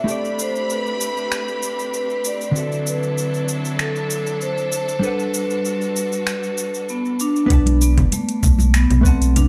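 Lightly reverberant and smooth, this sunset chillout excerpt pairs a ringing, metallic vibraphone melody with dark, clean hollow-body jazz guitar, both washed in digital delay and shimmer reverb, over bowed strings with vibrato that sustain chords until 7.5 seconds and a produced R&B kit of cabasa, congas, finger snaps and metallic hi-hat, before a round, up-front sine sub bass and a deep electronic kick in the background arrive on a Bm7 chord, joined by ringing congas at 7.7 seconds.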